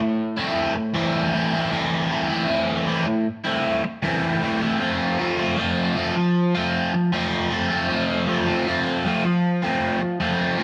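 A crunchy, overdriven electric guitar opens the excerpt and carries it alone as the solo voice: bright, picked and double-tracked, sitting up front with a phaser coloring its tone as it ranges from A2 to F4. The rock feel is hypnotic and dark, moving at a slow 78 BPM in a straight 4/4 over A minor before shifting to F at 4.8 seconds, with the guitar tuned to A4 = 442 Hz. A moderate stone-room reverb gives the sound the presence of a band playing live together in one space.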